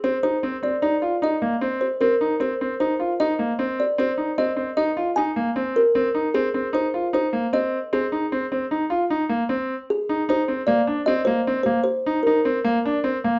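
The recording sits in a wet studio room, heard from further back, with a dulled, rolled-off top end that softens the whole picture. This short progressive instrumental passage, cut from a longer piece, moves in an odd 5/4 metre with a straight feel and a bright, intricate mood. A concert grand piano plays arpeggios throughout, its tone brilliant and smooth, with deep bass and a vintage character, placed up front in the mix. Over it, a kalimba carries the melody for the full length, its woody, hollow-box pluck sounding mellow, short and dark. At 9.9 seconds the harmony shifts to an Eb5 chord, opening a new section that runs until the cut at 13.4 seconds.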